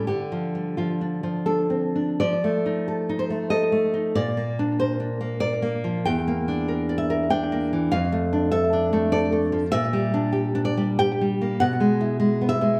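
In a rubato 3/4 that drifts between 74 and 102 BPM, this melancholic, intimate fragment of a longer romantic piece for solo classical guitar in D minor features a fingerpicked nylon-string guitar, warm and up front and touched with slapback echo, ranging from E2 to G5 as it moves from a brief opening on Dm into a longer passage at 2.2 s through F7, Bb, Em7b5, Dm/F and Gm/Bb before resting on E/B at 11.6 s, all captured with close, detailed microphones in light reverb.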